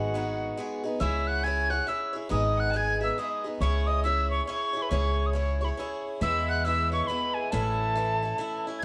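Celtic folk in a swung 3/4 at 138 BPM, this short passage in C# minor feels rollicking and bright, cut from a longer piece. A mellow wooden whistle carries the melody with a pure tone, chiff, crisp attack and expressive vibrato, its highs gently rolled off. Beneath it, a single dark, woody fiddle plays a bowed second line with light vibrato, while a boxy, picked swing-style acoustic guitar sits up front with a bright accompaniment. An upright bass, plucked and dark with steel strings, also sits forward in the mix and stops at 8.3 seconds, just before the other parts finish. The harmony moves between G#m and C#m before shifting to E at 6.2 seconds and then to A, and a moderate recital hall reverb gives the ensemble a sense of space.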